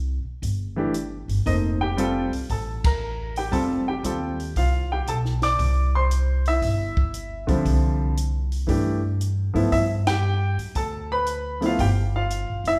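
A large studio reverb surrounds this short jazz piano trio excerpt, placing the listener further back in the room while the bass and piano still sit up front. The mood is warm and sophisticated, with a swung four-beat feel that moves at an easy, confident pace. The upright bass opens at 0.0 seconds, its plucked steel strings sounding woody and growly with a bright edge. A compact cocktail drum kit follows, dry and natural, with a punchy kick, high-tuned snare, hi-hat and dark ride cymbal. The grand piano carries the melody from 0.8 seconds, its tone natural with short sustain, moving through colourful ninth and added-ninth harmonies. The whole band hits shared accents at 2.8 and 10.0 seconds, giving the passage crisp punctuation.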